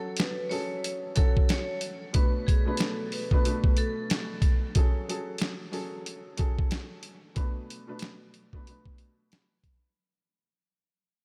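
A swung boom-bap groove drives this reflective, dark hip-hop excerpt, with a gritty, pitched-down sampler kit up front, its thumpy kick, medium-tuned snare and hi-hat compressed. A dark, woody upright piano carries the F#madd9 and Bm7 chords through a cassette-tape haze with audible action noise, while a bright, ringing vibraphone played with hard mallets adds a tape-echoed melody with slow motor vibrato until 4.1 seconds. From 4.8 seconds the music fades out under light studio reverb.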